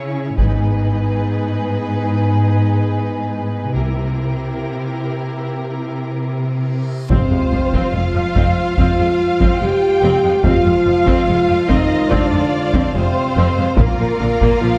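Relentless and dramatic, this epic orchestral film-score cue moves at 72 BPM in 4/4, building from a first half of bowed violin melody and a darker, expressive second violin line over a background viola accompaniment, mellow French horn chords, an up-front cello bass and lush double basses, while heavy-stick taiko hits sound briefly near the opening. At 7.0 s a huge reverse cymbal and sub drop lead into an impact at 7.1 s, where the taiko ensemble returns, the music settles into F dorian, and a very quiet, focused string section and clear trombone section add sustained chords. The sound is dark, cut from a longer piece and bathed in a scoring-stage reverb, with the violins placed at a distance.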